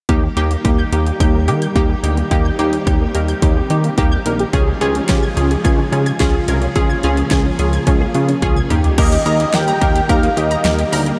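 A fat, dark analog lead with vibrato and tape echo arrives only near the end, carrying the melody from 9.0 to 10.9 seconds after a drum fill, over a driving, cool synth-pop groove at 108 BPM in 4/4 that moves between Eb and Db. Punchy electronic drums with a fat snare and bright hats sit up front with a funky, mellow polysynth comp, joined by a glossy, retro chorused synth bass. Behind them, a lush, detuned unison pluck spins bright arpeggios through tape echo and a vintage string machine holds phased cello chords, all bathed in a huge, dreamy reverb in this short cut from a longer piece.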